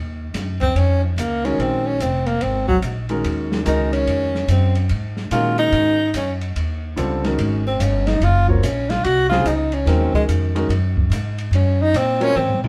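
Modal jazz with a spiritual, cool mood swings at 145 BPM in Eb dorian, as a woody pizzicato upright bass opens at 0.0 s and a small-room drum kit with dark cymbals and a boomy kick joins beneath a breathy, close-miked tenor saxophone solo with vibrato and an intimate baby grand piano whose action noise is audible, all over alternating Ebm11 and Gbsus2 chords in a moderately reverberant live room, until a drum fill at 12.4 s closes this fragment of a longer piece.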